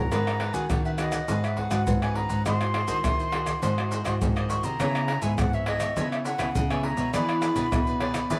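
An airy wooden flute with vibrato and a crisp attack carries the melody through this nostalgic, bittersweet samba and choro fragment, over a dry, rustic folk marimba second line, a bright picked cavaquinho and a full-bodied fingerpicked nylon-string guitar with audible finger squeak, all set back in the mix, while an up-front fingerpicked nylon-string guitar plays a warm bass line and vintage, band-limited maracas, tight surdo, pandeiro and tamborim sit up front from 0.1 seconds under light reverb.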